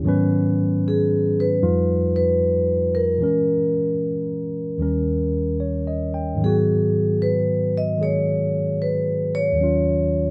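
A melancholic, wistful jazz ballad in G# minor at 76 BPM with a swung 4/4 feel, this short excerpt from a longer piece opens on a bright, barky electric piano sounding clean through a combo amp, joined at 0.9 seconds by a metallic, ringing vibraphone, played with medium mallets and motor off in a boxy small room, carrying the melody, both up front under light reverb as the harmony moves from G#m7 through A#m7b5 and D#7 before settling toward D#m7 at 9.6 seconds.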